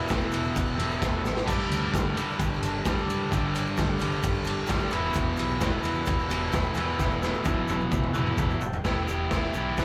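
Raw and menacing, this garage rock cut from a longer piece drives at 130 BPM in a straight 4/4, sitting in E minor and moving from Em to G at 1.5 seconds and back to Em at 4.9 seconds. A biting, overdriven guitar leads up front with a double-tracked picked riff, while a growling electric bass, bright and overdriven, sits in the background beneath it. The raw drum kit is saturated and gritty, with a boomy kick, medium-tuned snare, crash, ride and toms, and it throws in fills at 1.2 seconds and again from 7.0 to 8.9 seconds. A vintage, buzzy combo organ holds sustained chords in the background, adding transistor fills at the start and near the end, and a grainy egg shaker ticks faintly beneath everything else. The sound is that of a live gig heard through a club PA, with light reverb giving the band a rough, in-the-room immediacy.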